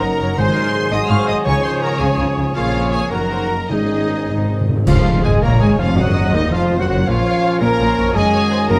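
An excerpt from a dramatic, fast romantic movement in Db major for symphony orchestra, lively and cheerful at 110 BPM in a rubato 6/8, opens with a lush, vibrato-rich violin section singing the melody over supporting lines from flutes, a mellow clarinet, a quieter second violin group and an oboe, while violas with expressive portamento, dark French horn and trombone chords, thumb-plucked harp arpeggios and dark trumpet stabs fill out the texture. Clear double basses and cellos carry the bass, and hard-mallet timpani enter at 0.4 s, later playing a fill that leads into a full-band accent at 4.9 s with dry, dark cymbal clashes and bass drum, where a distant bassoon joins the accompaniment. The sound is close and detailed with light reverb, moving through chords such as Ab7, Bbm7 and Db/F before ending on Ebm7/Gb.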